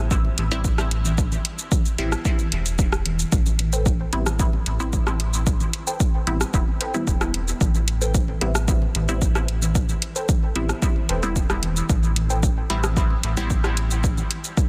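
Hypnotic and nocturnal, this dub techno excerpt moves at 112 BPM in a straight 4/4, sitting on a single Am9 chord in A minor. A punchy, overdriven electronic kick sits up front, joined by a deep house drum kit of metallic hi-hats, rim click and shaker, while layered congas add overdriven, echoing accents further back. Underneath, a round analog bass holds low, sustained notes with a dark, sine-tinged body that pumps against the kick. A filtered dub chord stab runs throughout, its detuned, wave-folded and resonant tone given a phaser sheen and trailing dub echoes as it pumps in time. From 3.7 seconds to 12.5 seconds a second, higher stab riff drifts in the background, decaying plucks thickened by subtle chorus and echo. The digital ambience and dense, heavily limited master keep the whole groove tight and loud.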